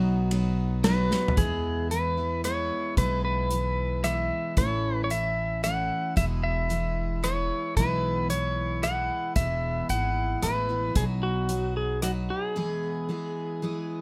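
Closely miked with light reverb, this heartfelt, easygoing honky-tonk waltz excerpt sets a bright, full-bodied picked dreadnought acoustic guitar and a woody, thumpy pizzicato upright bass under a punchy small-room country drum kit that enters at 0.3 seconds and plays a fill at 1.1 seconds, while a clean, twangy pedal steel carries the melody with fingerpicked slide lines and volume swells, and after the bass and drums stop, guitar and steel ring out through a closing break from 12.6 seconds.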